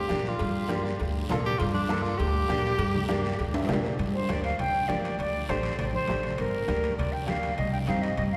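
Soaked in the long, wet reverb of a church, this driving, passionate cumbia excerpt at 200 BPM in G minor opens with a breathy, vibrato-laden tenor saxophone solo over thumpy gut-string upright bass, a bright upright piano with audible action noise, damped congas, ringing cowbell and timbales, and raspy guiro, before an airy silver concert flute takes the melody at 4.1 seconds over chords moving from Gm through Dsus4 and back to Gm and Cm.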